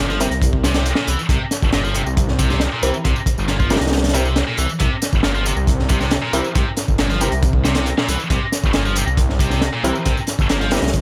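A heavy, double-tracked high-gain guitar riff and a thick, detuned saw bass open this raw, funky breakbeat fragment at 0.0 seconds, cut from a longer piece and sitting on a C7 chord at 137 BPM in a straight 4/4. The distorted, bright guitar is picked between Bb2 and F3, with overdrive and delay adding bite, while the menacing bass beats up front with a fast attack and sustained, saturated tone. From 0.1 seconds a crunchy acoustic drum kit drives the breaks, its punchy kick, high-tuned snare and hi-hat sounding gritty and dark with a rolled-off top, placed close to the listener. A tape-toned electronic tambourine sits in the background beneath it. From 0.2 seconds an orchestra-hit-like synth stab punctuates the groove with bold, detuned sawtooth layers, a noise layer, a filter sweep and a moving notch, its short decay trailing into built-in reverb and delay. The whole mix is set in studio reverb.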